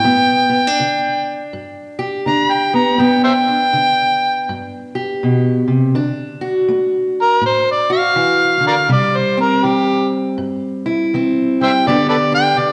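Swaggering and gritty, this excerpt of acoustic country blues moves at 81 BPM with a swung 4/4 feel in G major, passing from G to D, C and back to G. An amplified, overdriven harmonica carries the melody up front with light vibrato, tongue slaps and scooped notes in a jazzy solo style, while a fingerpicked steel-string parlour guitar lays down a dark, boxy accompaniment alongside it. Both sit in the moderate reverb of a church or concert hall.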